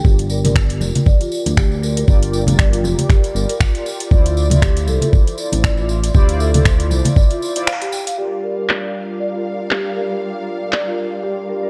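A dark, reverb-soaked afro house cut with a hypnotic mood, where a knocking electronic kick and smooth, up-front synth bass anchor low-tuned congas, a jingly tambourine and a deep house kit of finger snaps, handclaps and metallic hi-hats, while woody soft-mallet marimba arpeggios and round, chorused synth brass stabs pump through digital delay until a break at 7.7 s opens onto lush bowed strings at 8.2 s as the marimba is filter-swept to the close.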